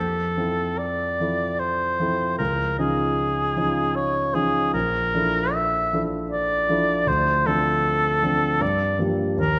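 An oboe with light vibrato and a smooth top sings the melody over an intimate, vintage-sounding grand piano whose deep bass and audible action noise sit up close, forming a luminous, dreamy impressionist classical duo that sways freely in three with rubato through lush chords from Fmaj7 to Gm7, set in a reverberant recital hall and cut from a longer piece.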